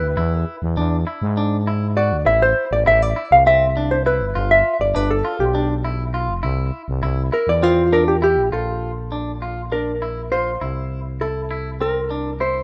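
This progressive instrumental piece is cut from a longer work, intricate and bright, moving at 201 BPM counted in eighths in a straight 7/8 and centered on Bb lydian. A dark, fingered hollow-body jazz guitar sits up front carrying the melody between F4 and F5, taking a solo through the opening 8.5 seconds with tape echo trailing its clean tone. Beneath it, a clean electric guitar picks compressed, twangy arpeggios in a narrow middle register, also touched with tape echo and set lower in the mix. A thick, growling FM bass with a fast attack and sustained notes holds the low end, pushed up front alongside the lead guitar. The harmony runs through E7, Am, G7 and C before shifting at 8.5 seconds to Bbmaj7 and C7, all heard in a moderate small-room ambience with the rough feel of a home demo.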